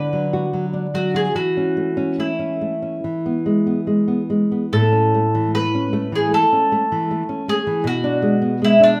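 Tender and lyrical, this short romantic duo excerpt in a free, rubato 4/4 sets a round, double-strung picked mandolin melody up front over thumb-plucked nylon-string classical guitar accompaniment, both heard throughout the 9.0 seconds in a moderate recital hall reverb as the harmony moves from Bm/D through A/E and E to A before arriving at G#dim/B at 7.9 seconds.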